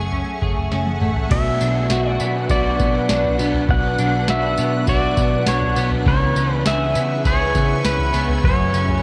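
Dream pop at 101 BPM in B dorian, this ethereal, hazy excerpt, cut from a longer piece, opens with a shimmering, detuned ambient pad holding sustained chords, a bright, twangy electric guitar at the edge of break-up playing arpeggios through ensemble chorus, delay and shimmer reverb, and a dark, round, foam-muted picked bass. A booming analog drum machine with a deep kick, crisp snare, tambourine, toms and crash cymbal comes in at 0.1 seconds, and a drum fill from 0.7 seconds leads into the main section. At 1.3 seconds a clean, compressed pedal steel guitar takes the melody with fingerpicked slide lines and volume swells, bathed in delay and shimmer reverb. An overdriven semi-hollow guitar enters with it as accompaniment, colored by harmonic tremolo and lush chorus. The harmony moves from F#madd9 to Bm, then C#m7 before returning to F#madd9. A moderate plate reverb and the warbling pitch drift of worn cassette tape give the whole recording a dreamy, aged haze.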